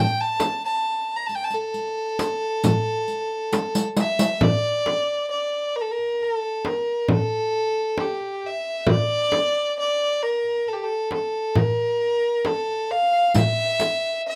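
A nasal, earthy single violin with light vibrato carries a longing, hypnotic melody in this Arabic maqam ensemble piece in 10/8, over a crisp metal-shell darbuka played with soft hands, a compressed, saturated frame drum struck with hard hands up front, and a riq whose bright jingles drop out after a drum fill ending at 4.4 seconds and return at 13.3 seconds, all in a rough home demo mix with light reverb.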